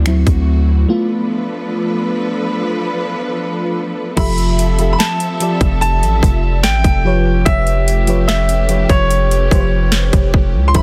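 A dreamy, warbling FM electric piano with a soft pad layer and chorus opens this tender, smooth contemporary R&B piece at 73 BPM over lush bowed strings, a deep, mellow 808-style bass sitting up front and an overdriven trap kit with a hard-clipped kick, sharp snare, metallic hats, finger snaps and crash, moving from D7 to Bm7b5/F before a clear baby grand piano enters at 4.2 seconds with a delayed high melody over Fmaj7 and A7/F, all in a dense, dry, heavily limited modern mix.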